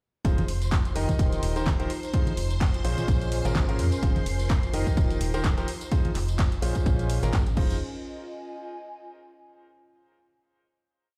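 A dry mix with little reverb, played back on a big sound system in a bare stone room, gives this short, complete piano house piece at 127 BPM a resonant edge, swung on the sixteenths in F minor with a bittersweet, energetic mood. A clear concert grand piano drives it with a rhythmic chord riff in close voicing, its deep bass and long sustain carried by delay, while a hollow, organ-like FM bass with a fast, decaying attack plays a dark, syncopated riff beneath, both pumping against the kick. A punchy, dry electronic kick holds four-on-the-floor, joined by an analog drum machine's claps, closed and open hats and crash, a very quiet, gritty sampler-style breakbeat loop with edits, and close tambourine and high conga in the background. Shimmering vintage string-machine violins hold a high note behind it all through ensemble chorus, and a warbling, lo-fi, detuned pad with ring modulation and built-in reverb drifts through slowly shifting chords cycling through Fm7, Cm7/Eb and Bbm7. 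The groove runs until 7.8 seconds, after which the pad alone carries the final note out to 9.7 seconds.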